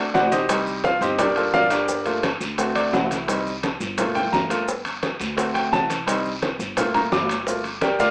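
A bright, up-front grand piano leads this fiery, passionate salsa excerpt in G minor at 172 BPM, playing solo across the full 8.1 seconds over a cycling Cm, Gm7 and D7 progression. Beneath it, a woody, thumpy pizzicato upright bass on gut strings holds the low end, while a bed of Latin percussion fills out the groove: ringing, saturated congas, tight high-tuned bongos in the background, distant metal-shell timbales, a raspy guiro and grainy maracas. The mix sits in moderate studio reverb with a small-speaker character.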